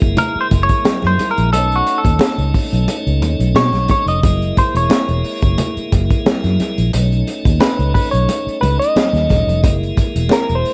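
A straight 4/4 funk groove rides on a crunchy breakbeat kit, its punchy kick and high-tuned snare gritty and saturated with a rolled-off top, beside an up-front, foam-muted fingered bass that sounds round and dark. A bright, twangy clean electric guitar, recorded direct with wah and plate reverb, takes a funky, energetic solo over chords that shift between F#9 and B9, while a piping tonewheel organ holds sustained chords with light overdrive, key click and a slow rotary speaker. Very quiet congas ring in a live room underneath, in this short cut from a longer piece.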